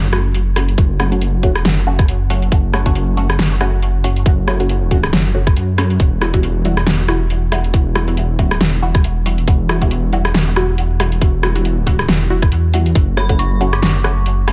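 A half-time groove with swung sixteenths drives this cavernous, heavy deep dubstep excerpt, its up-front drum kit of overdriven bright hats, rim click and a huge snare joined at 0.8 seconds by a tight electronic kick that drops out at 13.4 seconds. Beneath it, a dark, detuned sawtooth bass rumbles and beats, while muted, filtered dub chord stabs with phaser, subtle chorus and dub echo move from F#m to Emadd9 and back inside a digital ambience. At 13.2 seconds an eerie, inharmonic FM synth bell with chorus and dub echo briefly rings out.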